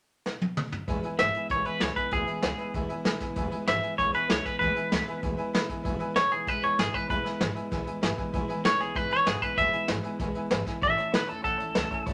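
A brushed vintage drum kit with a punchy kick and medium-tuned snare opens this rowdy, upbeat rockabilly excerpt at 193 BPM with a fill at 0.3 seconds, before a bright, picked jumbo steel-string acoustic guitar, a jangly, metallic tack piano and a woody, thumpy pizzicato upright bass set in at 0.9 seconds on E major, shifting to A near the end, while a clean, twangy fingered electric guitar carries the melody up front in moderate studio reverb.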